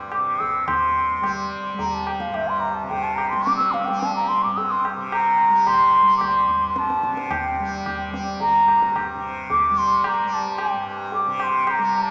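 The mellow bansuri leads this Hindustani classical piece, its pure bamboo tone carrying a gentle vibrato with a soft attack and rolled-off highs as it sits up front, singing the melody between E5 and E6 in raga Bageshri on G. Beneath it, a bright, buzzing tanpura drone shimmers from G2 to G3, softly plucked and sounding from the very start, while a low-tuned, ringing tabla plays quietly in a small-room sound from 0.1 s. The mood is longing and meditative, moving in 3/4 at about 109 BPM with a straight feel, and the tempo gradually speeds up across the roughly 12-second excerpt, which is cut from a longer piece. A wet church reverb with a long 3.0-second decay surrounds the performance, giving it the air of a church or concert hall heard through a small speaker.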